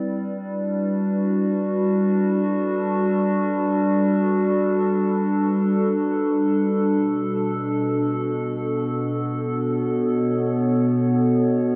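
Luminous and weightless, this ambient passage drifts in free time and is cut from a longer piece. A single warbly, tape-like pad carries it alone from 0.0 to 11.8 seconds, spanning B2 to D5 with a nostalgic, lo-fi character built from detuned square and triangle tones. Its slow attack, long sustain and lengthy release give the sound a warm, dark glow, while chorus and delay add a gentle shimmer to the up-front pad. The harmony rests on Gmaj7 before shifting to Bm7 at 6.9 seconds. A wet cathedral reverb of about 5.1 seconds surrounds the pad, placing it in a vast, echoing space.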